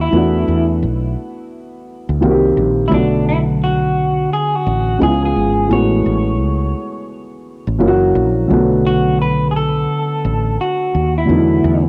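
A nostalgic, hazy lo-fi hip hop passage at 86 BPM in B dorian opens with a slightly broken-up, compressed electric guitar melody through a small old amp, dulled by a low-pass filter, cassette tape and tape echo, over a dark, boxy upright piano accompaniment and a round fretless electric bass, all three up front. Swung sixteenths carry the harmony from E9sus4 through Cm7, Bm7, C#7 and F#m11/A to F#7, returning to Bm7 and E9sus4. The home cassette recording sits in a small room with moderate spring reverb and a faint mains hum, and the guitar drops out at 11.8 seconds as this cut from a longer piece closes.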